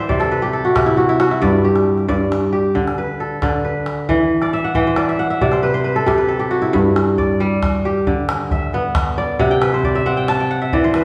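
A fingerpicked kora opens with ringing, crisp arpeggios up front, joined almost at once by the deep, live-room thump of a calabash in a flowing 12/8 West African traditional groove that feels joyful. The kora spins out fills at 4.4 seconds and again at 9.4 seconds, as the harmony shifts at 6.7 seconds into a second passage built on G. A wet recital-hall reverb gives this short cut from a longer piece the airy resonance of a church or concert hall.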